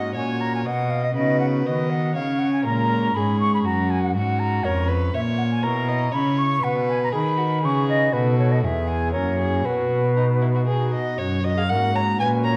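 In a straight triple metre, this radiant, dance-like passage from a longer baroque-style sonata movement moves with continuo support throughout its 12.6 seconds. A concert flute carries the melody with a pure, softly attacked tone and expressive vibrato. Beneath it, a single bowed violin plays a second line in period style, its gut strings giving a rich, reedy colour with light vibrato. A pipe organ on foundation stops fills in the accompaniment with a thick, romantic voicing, while a single period-style cello, also on gut strings, anchors the bass and sits up front in the balance. The ensemble plays in a wet recital hall, and the production is dark and warm overall.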